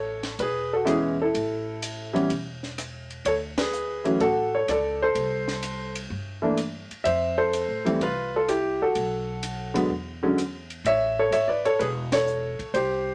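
A swinging 4/4 groove at 126 BPM drives this sophisticated jazz piano trio fragment, cut from a longer piece, with the band hitting accents together at 3.5 and 12.0 seconds. A clear, natural concert grand sits up front carrying the melody with deep bass over woody pizzicato upright bass on steel strings, while a compact cocktail kit adds dry texture through hi-hat, ride cymbal, rim click, a high-tuned snare, punchy kick and dark cymbals. The harmony moves from Amaj7 through Dmaj7, Fmaj7 and B7 to a brief chordless break before landing back on Amaj7, all in a light reverb.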